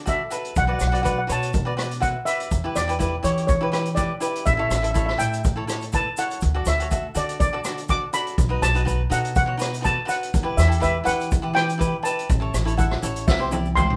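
With light reverb, this festive, bouncy calypso excerpt at 123 BPM in D major carries a shimmering, mellow steel pan melody played with soft rubber sticks over dark, woody pizzicato upright bass, crisp picked cavaquinho, an up-front street-band drum kit with a boomy kick and rolled-off top, and a grainy tube shaker in the background, moving through D, Bm7, Em7, A, B7 and Em before a drum fill at 13.3 seconds lands on a C chord.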